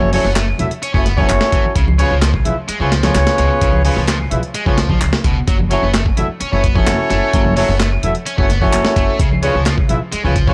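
Gritty and swaggering, this breakbeat cut from a longer piece rides a straight 129 BPM in 4/4, moving between F#m7 and C#7. Up front, a compressed, sampler-style drum kit thumps out kick, medium-tuned snare and hi-hat with a tape-warm, gritty edge, while electronic handclaps sit in the background from 0.4 to 9.8 seconds. A mellow, tight horn section fires smooth-topped stabs with octave doubling and analog delay, placed prominently in the mix. Underneath, a woody, dark upright bass plucks gut strings, and ringing congas played with soft hands murmur in the background. A bright, high-gain distorted guitar, double-tracked and picked, adds a riff treated with distortion and analog delay, all captured dry on a gritty cassette-tape hardware recording.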